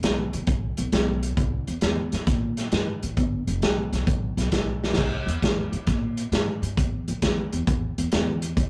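Electric blues shuffle at 134 BPM in 4/4 with a swung feel, rollicking yet laid-back, carried by upright bass and a vintage drum kit playing together throughout this short excerpt. The pizzicato bass is woody and growly with a thumpy low end, while the up-front kit brings a punchy kick, medium-tuned snare, hi-hat, crash and dark cymbals under a rolled-off top. A drum fill at 4.7 seconds leads into a new section at 5.0 seconds, all heard in a rough rehearsal-room recording with tube saturation and a modest small-room reverb.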